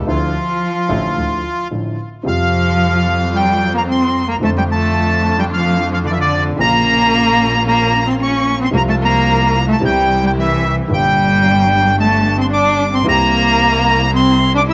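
Tango at 111 BPM in a rubato 4/4 and F major, melancholic and dramatic, with an up-front, reedy bandoneon carrying the melody through tape echo over a nasal, portamento-laden bowed cello second line, a focused bowed double bass, and a dark, worn grand piano whose action noise is audible in the background, with a brief break at 1.7 s before very quiet, lush symphonic string stabs enter at 2.3 s, all set in an echo chamber reverb with studio ambience.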